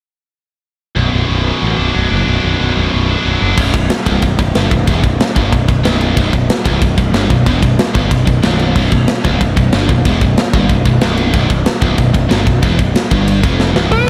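A lush hall reverb gives this short cut from a longer heavy metal piece a big arena sound, epic and dark at a brisk 185 BPM in straight 4/4. From 1.0 seconds a bright, double-tracked high-gain guitar drives the riff up front over a growly fuzz bass, the harmony resting on B minor. At 3.6 seconds the tight metal drum kit comes in with a medium-tuned snare, tight kick, hi-hat, ride and crash, as the chord shifts to Cmaj7(no3) over a B bass. A drum fill closes the passage, and at 13.9 seconds a dark, distorted lead guitar sounds a single high B4 just before the cut.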